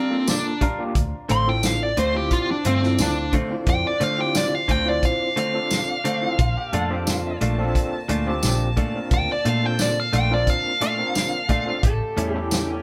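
A dark, smooth overdriven lead guitar sings the melody up front in this smoky, mournful soul blues excerpt, set in D minor at 88 BPM with a straight-eighth feel. Beneath it, clean direct-recorded guitar stabs with spring reverb, a barky, gritty tine electric piano with fast tremolo, a roomy soul drum kit with tight kick and tambourine, a round, punchy muted fingered bass, and a clear horn section holding sustained chords in the background fill out the sound of a band playing live in one room. At 6.4 seconds a second, slightly broken-up guitar through a small old amp joins with a phaser-tinged line as the chords move from Dm7 to Bbmaj7, reaching A7 at 11.8 seconds.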